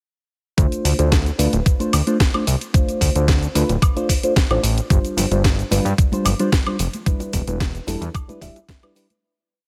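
Sensual and sleek, this short nu-disco piece at 111 BPM in D dorian rides an overdriven, thumpy four-on-the-floor kick, a tape-warm house kit with cracking snare, hi-hat, cabasa and woodblock, and a fat, detuned sawtooth bass riff under reedy electric piano chords in a dotted rhythm, treated with phaser, sidechain pumping and dub echo, while very quiet shaker, congas and bongos join at 4.9 seconds as chords move from Dm7 through G7sus4 to Em7 and the whole track fades out from 6.3 seconds.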